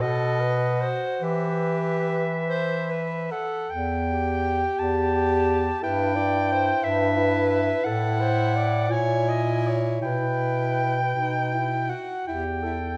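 A mellow soprano saxophone carries the yearning melody up front, its smooth top touched with light vibrato, in this melancholic classical passage for single-reed quartet taken from a longer piece. Beneath it, an alto saxophone with a warm, roomy, more distant tone and its own vibrato sings a second line. A tenor saxophone adds clear accompaniment, and a bass clarinet anchors the bass up front from E2 to E3. The music sits in E minor in 6/8 at roughly 48-61 BPM in dotted quarters, played with rubato and tuned to A4 = 441 Hz. The opening phrase returns at 3.7 s, and the harmony moves from B7b9 to Em, then through Em/G, A5 and A#m7b5 before settling via B back to Em at 12.3 s. A wet recital-hall reverb with a 1.7-second decay surrounds the quartet.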